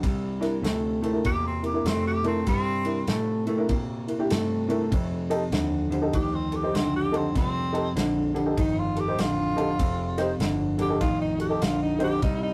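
Electric blues shuffle at 98 BPM with a swung feel, swaggering and soulful, cut from a longer piece and moving from C7 to F7 at 4.9 s. A dark, clean electric guitar riff with spring reverb sits up front over a round, foam-muted fingered bass and an airy acoustic kit of punchy kick, medium-tuned snare and ride cymbal, while a jangly, detuned upright piano comps from 0.4 s. From 1.3 s a bright tenor saxophone takes the solo with soft-attack vibrato in a jazz style, all captured in a rough rehearsal-room recording with a moderate booth ambience.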